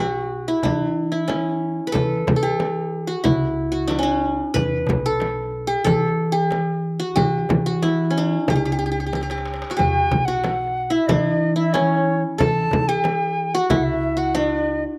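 Dry and open-air, this stately, festive Arabic maqam ensemble piece in E maqam rast moves at 92 BPM in a straight 4/4. A bright-edged, plectrum-plucked qanun leads up front with a slapback echo, over a woody, dark pizzicato upright bass, a deep frame drum played with hard hands, and a crisp metal-shell darbuka set distant in a large room. After a drum fill at 9.1 seconds, an airy, reedy silver concert flute with vibrato and slapback echo enters at 9.8 seconds to add a second line above the qanun in this excerpt from a longer piece.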